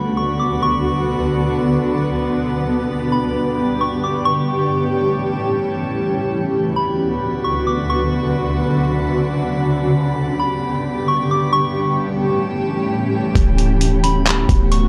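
A cloudy, detuned granular pad sits up front through the whole excerpt, holding blurred, slowly evolving chords that breathe with a sidechain pump inside its own bright reverb. This is floating, dreamy cloud-rap hip hop at 132 BPM in a half-time 4/4 feel, in D major and tuned to A4 = 438 Hz. The harmony cycles through D6, G and A7. Above the pad, a soft FM synth bell sings a mellow, pure melody in a high register, colored by chorus and analog delay. A faint, glassy texture of drifting overtones hovers calmly underneath until 13.3 s. At 13.4 s, a deep, boomy 808-style sine bass arrives with a trip hop sampler-style drum kit of handclaps, hi-hat and a thumpy kick, pitched down and compressed, giving a gritty, dry hardware character lightly touched by digital ambience.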